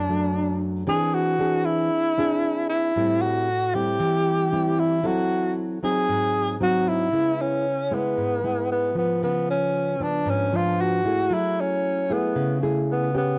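A breathy tenor saxophone carries the melody from the first moment, its whispered, mellow tone shaded with vibrato and a soft attack in an intimate jazz style, sitting up front as the solo voice. Beside it, a nylon-string guitar supplies the accompaniment, thumb-plucked in a classical manner with audible finger squeak and an acoustic, warm character, also placed up front. This is a melancholic bossa nova in a straight 4/4, cut from a longer piece, with both instruments playing together from start to finish across its 13.4 seconds. The harmony opens on a rootless Bm7 and moves through E7b13, Am7, F#m7b5 and G#7 before settling into a new passage at 7.1 seconds built on C#m7, C#7b9 and F#m9. Light reverb and a small-room ambience frame the duo, and the cassette-tape character of this home recording lends the sound a close, private intimacy.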